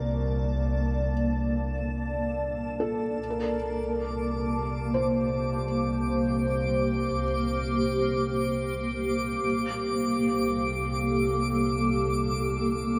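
A cloudy, evolving granular pad, a felt-muted upright piano playing soft, intimate arpeggios with audible action noise, and a bowed double bass section holding a pure, floating C2 open this peaceful, weightless ambient excerpt, joined at 3.8 s by a twinkling, sparkling granular texture with an octave-up shimmer before the piano falls away at 9.5 s, the whole set in a vast, echoing cathedral space.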